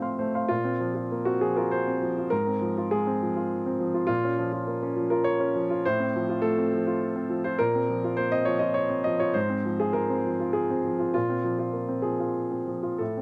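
Neoclassical minimalist piano in Bb minor, this wistful, intimate passage, cut from a longer piece, moves in a rubato 3/4 at around 101 BPM, with a solo concert grand cycling through Bbsus2, Fm/Ab, Bbm and F/A from 0.5 seconds. The piano sits up front with a clear, natural tone and deep bass, spanning Ab2 to C6, and a slapback echo adds a quick doubling to its notes. Recorded outdoors with only light reverb, the sound feels open and close at hand.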